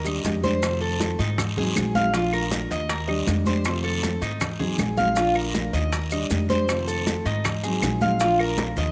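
A bright, metallic Cuban tres sits up front with picked arpeggios on its doubled strings, some octave-doubled, over a full-bodied, thumb-plucked nylon-string guitar accompaniment and a dark, growly pizzicato upright bass. This short, relaxed excerpt of Cuban son and guajira moves at 158 BPM in Bb major, cycling through Ebmaj7, F7, Ab7 and Bbmaj7 in a straight 4/4. Thin-skinned, bright congas, round low-tuned bongos with a compressed, saturated edge, woody claves, grainy maracas and a raspy, close guiro enter around 0.1 to 0.3 seconds, and the whole is bathed in a wet echo-chamber reverb with small-room ambience.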